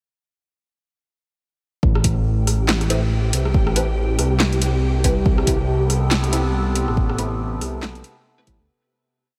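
A half-time deep dubstep groove swung on the sixteenths drops in at 1.8 seconds, an overdriven electronic kick and a deep house kit of punchy snare, claps, rim clicks and metallic hats laying down a half-time beat under a rumbling, detuned saw bass that glides through long notes up front. Sparse, nasal dub chord stabs with phaser and echo sit in the background beside a flickering, grainy texture holding a single high note, while an overtone-sweeping drone joins at 5.6 seconds. The dark, heavy piece fades out from 6.4 seconds to its close.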